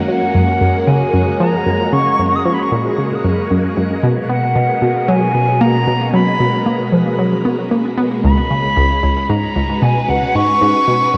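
Cosmic and expansive, this excerpt of sequencer-driven ambient space music moves at 114 BPM in F# major, with a round, bright analog pluck riff carrying chorus and delay alongside swirling, vintage string-machine chords bathed in ensemble chorus, phaser and shimmer reverb, while a pure, vibrato-laden silver concert flute sings the melody through shimmer reverb and delay, the whole recording sitting in a wet plate reverb and the worn, warbling pitch drift of old cassette tape.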